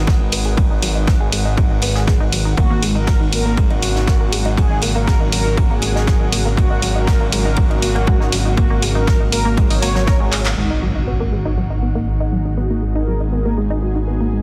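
Over a straight pulse driven by an overdriven, up-front electronic kick, a punchy analog drum machine's handclaps and hi-hat, and a small-room acoustic kit's ride and snare, this cinematic, dramatic melodic techno excerpt layers a gritty, saturated synth bass, tight detuned sequenced arpeggios with chorus, phaser, delay and sidechain pumping, a very quiet resonant analog drone and an ethereal airy pad in the background, before a round, brassy synth melody with dub echo and a lush, warbling unison pad enter at 2.6 seconds, and a drum fill leads into a background electronic impact at 10.6 seconds as the drums and drone drop away under filter sweeps.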